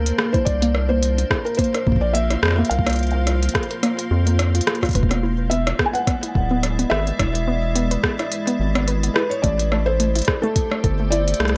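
A round, deep analog bass sits up front in this wistful, playful IDM excerpt with a swung 16th-note feel, beneath a soft, felt-muted upright piano melody with audible action noise and digital delay, an icy, crystalline glass pad holding sustained chords through chorus and reverb, warbling lo-fi pluck arpeggios with 12-bit sampler grit, and overdriven electronic drums of smooth hi-hats, rim clicks and a soft kick, all moving through C7sus4, E7 and Am7.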